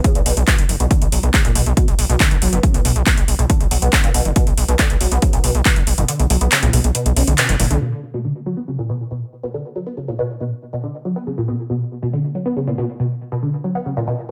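A squelchy, resonant blip pluck carries the riff through this dark, relentless slice of driving peak-time techno at 139 BPM in B harmonic minor, its detuned sawtooth tone coloured by ring modulation, phaser, lush chorus, digital delay and sidechain pumping. Underneath, a gritty sawtooth bass with oscillator sync sits up front, saturated and aggressive, pumping with the sidechain. An overdriven, heavy electronic kick anchors the straight 4/4 groove until 5.7 seconds, while a techno kit adds handclaps and metallic, pumping hi-hats. The full band hits an accent at 7.4 seconds, then from 7.8 seconds the pluck carries on alone under a filter sweep. A digital ambience surrounds the whole mix, and the recording is cut from a longer piece.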